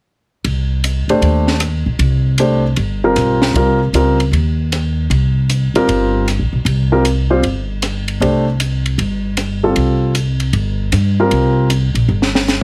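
Cool and intense, this modal jazz excerpt swings at 154 BPM in C dorian, with a woody, thumpy pizzicato upright bass up front, a dark compact cocktail drum kit playing hi-hat, ride cymbal, rim click and a high-tuned snare that closes with a fill at 12.1 seconds, and an intimate grand piano with audible action noise entering at 1.1 seconds, set in light reverb with a heavily compressed radio sound.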